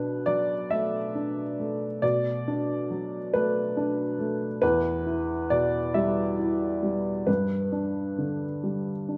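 A dark upright piano plays alone from the first moment, its mellow, woody, vintage tone sitting up front with long sustain as it moves from Bm7 through Em to G in a slow, rubato 6/8 lilt, an intimate and melancholic neoclassical minimalist fragment cut from a longer piece and set in a lush hall reverb on a rough home demo mix.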